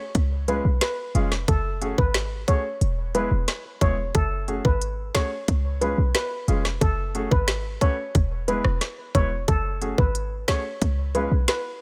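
A mellow steel pan, played with soft rubber sticks, carries the lead in this sultry, bouncy dancehall cut from a longer piece. It sits up front with a dark, shimmering metallic tone and a tape echo trailing its phrases in the A4 to C#5 range. Underneath, a tape-warm island pop drum kit, electronic and produced, sets a straight 4/4 groove at 90 BPM, with a tight kick, a woody snare, rim clicks and smooth hi-hats. A punchy, short 808-style sine bass, layered with noise and fast in attack, decays low in the register. A polished grand piano with short sustain fills in the chords with a sidechain pumping effect, cycling through C#, F#madd9 and E in F# minor. The mix is dry, running from 0.1 to 11.8 seconds.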